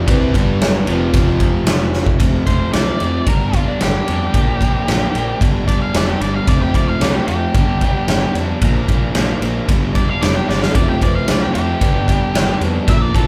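A straight 4/4 groove at 112 BPM drives this swaggering classic rock clip. A huge arena drum kit sits up front, its fat snare and punchy kick ringing in a big natural room. Beneath it, a growly fuzz fingered bass and three overdriven guitars pound out riffs over chords moving among G, F and Bb: a bright, crunchy picked one, a hollow-bodied semi-hollow, and a dark double-tracked one that drops out at 2.2 seconds. Moments later, at 2.5 seconds, an octave-fuzz lead guitar takes a distorted, fuzz-drenched solo on top, after a drum fill at 10.5 seconds an intimate, woody upright piano with audible action noise returns in the background, and the band plays live together under light reverb.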